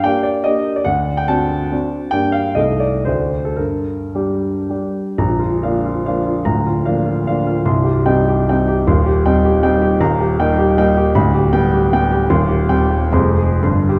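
A smooth, vintage-toned grand piano plays alone throughout this short cut from a longer piece, a capricious and wistful romantic dance in triple time built on dotted rhythms and shaped by free rubato. The opening phrase circles a minor home before the music turns brighter at 5.2 seconds and drifts toward darker harmony from 10.0 seconds. The piano sits up front, while a wet scoring-stage reverb places the listener further back in the room.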